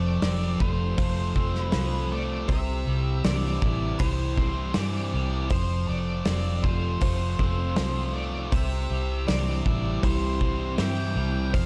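At a straight 80 BPM in 4/4, this blissful, hazy shoegaze and dream pop excerpt in C major rides a loose, punchy indie drum kit entering at 0.2 s over a round, foam-muted fingered bass up front, while a thick, dark fuzz guitar with lush chorus and a biting overdriven guitar soaked in reverse reverb grind out riffs, an octave-fuzz lead guitar with slapback echo carries the melody, a compressed direct-recorded clean guitar arpeggiates in the background, and a warbly, detuned, nostalgic lo-fi pad sustains chords over an F to C progression in a dark, small-room production.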